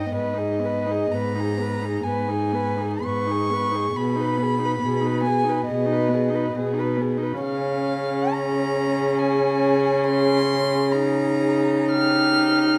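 Tender and lyrical, this slow romantic movement for string quartet in G# minor unfolds in rubato at 57-71 BPM, with a dark, intimate first violin singing the melody up front over a woody second violin line, an airy-bowed viola accompaniment and a rich, pure cello bass, the four players bowing sul tasto and captured by close, detailed microphones in a moderate recital hall reverb.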